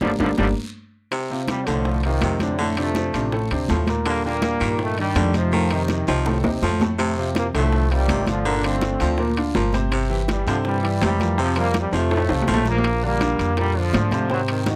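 A dry, close 1970s-style studio sound frames this sunny, danceable salsa excerpt at 164 BPM, where a brilliant, punchy trombone section carries the melody up front over a clear, slightly detuned upright piano with audible action noise, a woody, thumpy pizzicato upright bass, ringing congas and metal-shell timbales, very quiet low-tuned bongos and a raspy guiro, while a gritty baritone saxophone plays a second line from 1.1 to 12.7 seconds through chords moving from Gm7 and F to a closing Bb, punctuated by a band accent at the start and drum fills.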